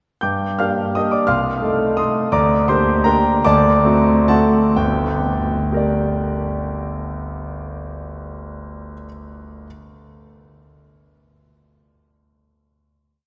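Bittersweet and nostalgic, this short classical piano waltz in G minor moves in a rubato 3/4 between 120 and 182 BPM, with a clear, intimate grand piano playing alone from 0.2 s, its tune in filled octaves over a waltz bass and its action noise audible, slowing from 1.8 s before settling on a final chord at 4.8 s that rings into a wet cathedral reverb heard from further back in the room.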